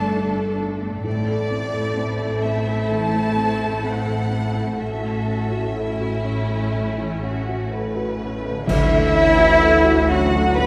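Lush, vibrato-rich violin sections carry a hopeful melody and a second line over bright violas, a dark baby grand piano, very quiet ringing harp arpeggios, and cello and double bass sections in this uplifting, rubato cinematic orchestral score at 63 BPM in D major, with a cymbal swell, clash cymbals and concert bass drum arriving at 4.8 s before an airy flute, mellow French horns and round, soft-mallet timpani join at 8.7 s for a full accent on a Dmaj7 chord, heard from further back in a wet scoring-stage reverb.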